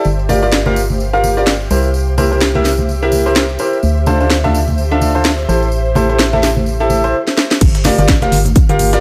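Soulful and bittersweet, this piano house excerpt in G dorian moves at a swung 127 BPM, with a clear, woody upright piano riff pumping under sidechain compression and trailing tape echo, a hollow, organ-like FM bass, ringing tambourine and congas played with hard hands, an ethereal, chorused pad glowing in the background, and a punchy house kit with cracking snare and crisp hats arriving at 0.5 seconds, until a drum fill leads into the drop at 7.6 seconds, where a punchy electronic kick comes up front and a gritty, filtered sampler-style kit adds hats and snare in the background.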